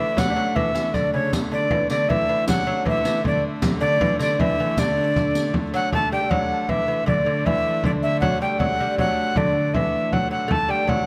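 A mellow tenor recorder carries the melody up front, its airy, wooden tone marked by a soft attack, chiff and gentle vibrato, in this rustic medieval dance in 3/4 at 157 BPM in D major. A delicate fingerpicked lute with gut double strings plays a second line beneath it, while a reedy, nasal hurdy-gurdy holds a drone and a deep frame drum struck with hard hands joins at 0.2 seconds alongside a distant riq of bright jingles that drops out at 5.8 seconds. Close, detailed microphones catch the ancient-sounding ensemble in a recital hall's moderate reverb, and the excerpt moves into a new section at 5.9 seconds.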